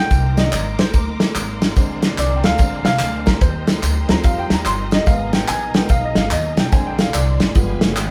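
A swung, uptempo gospel groove in four, driven by a tight, up-front soul drum kit and a woody, thumpy pizzicato upright bass, carries this uplifting, soulful clip as a natural-sounding baby grand piano takes the lead solo throughout, backed by a shouting, lightly overdriven tonewheel organ on fast rotary speaker, a dark, lush bowed string section holding sustained chords in the background, and live-room tambourine and group handclaps, all captured as a band playing together in one room with moderate studio reverb.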